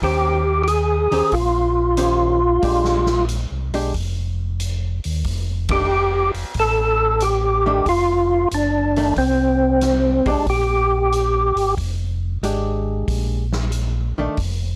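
A fat, lightly overdriven tonewheel organ with key click, third-harmonic percussion, chorus vibrato and a slow rotary speaker carries the melody until 11.7 s in this greasy, soulful soul jazz organ trio passage, swinging at 92 BPM in 4/4 in Bb mixolydian over a round, dark second organ holding the bass line with slow rotary and tube saturation, a clean, compressed hollow-body archtop guitar playing accompaniment, and a natural big-room drum kit with punchy kick, medium-tuned snare, hi-hat and ride, with a band accent at 5.6 s and a gritty, dry sound touched by light reverb.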